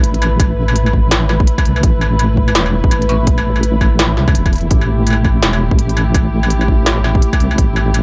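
A half-time drum and bass groove at 167 BPM in 4/4 sits on a 60% swing in the sixteenths, giving this tense, spacious excerpt a loping, heavy gait. An industrial kit of smooth hi-hats, a clanging snare and struck metal, re-recorded in a small room, runs through the whole excerpt, and an up-front, hard-clipped electronic kick joins it to drive the pattern from 0.4 to 7.7 seconds. Underneath, a deep, soft wobble bass blends sawtooth and sine tones, saturated and compressed with a fast attack and a chorus sheen, holding the low end across the whole passage. A muted studio string section, bowed con sordino with vibrato and a veiled, soft-attack sound, sustains chords on A5 while sidechain pumping makes it breathe against the beat. The production is dark and dry, with little reverb, leaving the bass and kick close and imposing.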